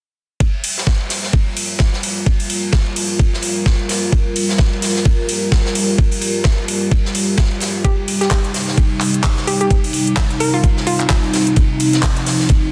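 A knocking, tape-warm electronic kick drives this swaggering, bouncy bass house excerpt at 129 BPM in 4/4, with a 58% swing on the sixteenths giving the groove its strut in G minor. Around it, a garage kit adds handclaps and metallic hats up front, while a big-room acoustic kit sits further back with ride, filtered hi-hat and a fat snare in natural studio ambience. From 1.2 seconds a deep, moody analog pad of detuned sawtooth and triangle waves with a sub octave holds sustained chords, its slow attack and long release pumping against the kick through chorus. The harmony rests on Gm7 before moving to Cm at 7.8 seconds, where a hollow, detuned square-wave pluck enters with a short bright melody, its quick-attack, decaying notes trailed by chorus and tape echo until 11.3 seconds. The mix is dense and heavily limited, set in a small room with light reverb.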